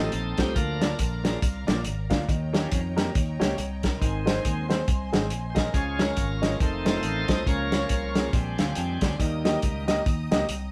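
Reverent yet jubilant, this short cut from a longer uptempo gospel piece moves at 139 BPM in 4/4 with a swung eighth-note feel. A bright, shouting tonewheel organ is featured as the soloist, its full, lightly overdriven sustained chords spinning through a fast rotary speaker until about 9.9 seconds. Beneath it, a woody upright piano with long, natural sustain plays accompaniment, while a fingered electric bass holds the low end with a warm, direct tone. A dry, up-front soul drum kit with a tight kick, medium-tuned snare and hi-hat has a muffled, lo-fi character and a rolled-off top, and it enters at 0.1 seconds. Further back, a smooth studio string section adds even, bowed sustained chords with vibrato. The band sounds as if it is playing live in one room with moderate reverb, and the harmony travels from F9 through Bb, Eb7, Ab and Db before turning through F7, Bbm/Db and Bb13 to land on Eb.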